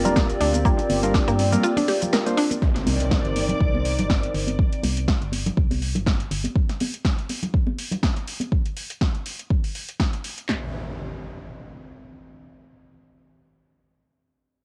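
Moody and late-night, this deep house excerpt moves at 122 BPM in 4/4 with a light 16th-note swing in C minor, cut from a longer piece. It opens on a drop over Gm7, where a smooth analog pad, a hollow organ stab with chorus, phaser and tape echo, and a woody, bright mallet-like pluck with analog delay all ride sidechain pumping above a dark, percussive FM bass. Two overdriven drum layers carry the groove: an up-front one with a deep kick, punchy snare and handclaps, and a second with metallic hats, shaker and snare, joined by soft-handed congas recorded in a small room. At 2.6 seconds an electronic impact lands as the chords move to Cm9, a filter sweep opens on the pad, and a silky, vintage string machine with ensemble chorus drifts in briefly above a nostalgic, warbling lo-fi pad sitting in the background. The harmony drops away at 6.6 seconds, leaving the drums to carry on, with the congas fading out at 8.5 seconds, until a final impact arrives at 10.5 seconds as the drums come to an end. 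Cassette tape coloring on most parts, light reverb and a digital ambience give it a homemade sound.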